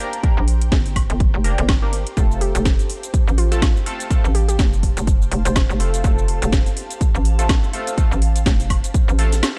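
A punchy, up-front kick drives this dark, aggressive and swaggering bass house excerpt at 124 BPM with swung 16ths. Alongside it sit a knocking, overdriven FM bass with sidechain pumping and a house kit of cracking snare, metallic hats, shaker and woodblock. Nasal, band-passed sawtooth chord stabs with phaser, cassette tape colour and digital delay move from Gm to F, while an ethereal, airy pad with ensemble chorus sits in the background. A hollow, detuned square-wave pluck with 12-bit sampler grit appears only from 2.4 to 5.8 seconds, and a break arrives at 9.4 seconds.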